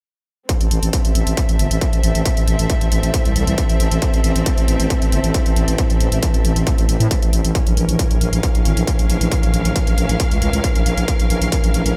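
Dark and hypnotic, this driving peak-time techno cut, taken from a longer piece, runs at 136 BPM in a straight 4/4 and sits in A phrygian, moving from A minor to B-flat minor at 7.5 seconds. A distorted, layered kick sits up front, re-recorded in a large room, while a dry, overdriven analog hi-hat ticks beneath it with sidechain pumping on the hats. A growling, thick FM bass with a fast attack holds the low end with tube saturation and sidechain pumping. A dark studio string section adds a lush, woody bowed texture, played sul tasto with vibrato, and a deep, detuned sawtooth pad with a sub octave enters at 1.7 seconds as a slow-attack drone in the background, coloured by chorus and its own reverb. The production has a bright 1980s-style digital sheen with light reverb and digital ambience.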